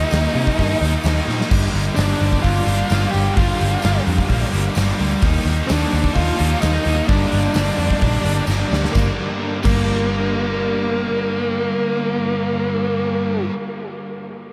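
Hazy and dreamy, this short shoegaze and dream pop excerpt moves in a straight 4/4 rock pulse, the whole mix soaked in a huge ambient reverb. Up front, an octave-fuzz lead guitar carries the melody with a dark, distorted edge, trailed by diffuse ambient delay. Beneath it, a thick fuzz guitar thickened by ensemble chorus and a biting overdriven guitar set back in the background, touched with reverse reverb, both play riffs, while a round, foam-muted vintage electric bass anchors the low end. A gated 80s drum kit with a punchy kick, medium-tuned snare and bright cymbals sounds as if in an airy stone room, joined by a jingly, compressed tambourine, and fills arrive at 1.3 seconds and again just before the drums and tambourine stop at 9.8 seconds. The harmony drifts from Eb through Gm7 and Ebmaj7 to Gm, and the guitars and bass ring on into the closing section.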